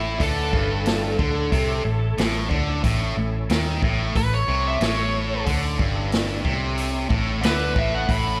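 A gritty, raunchy blues rock and southern rock passage in A major, cut from a longer piece, opens at once with a bright slide guitar played with fingerpicks carrying the melody through slapback echo, over a double-tracked, up-front distorted guitar riff, a dark, round, foam-muted fingered bass, and a very quiet, thick organ holding sustained chords through chorus vibrato and a rotary speaker. At 0.2 s a vintage acoustic drum kit joins with a punchy kick, medium-tuned snare and hi-hat, driving a straight 4/4 feel at 91 BPM. A lush hall reverb and small-room ambience give the power-trio sound a big arena scale.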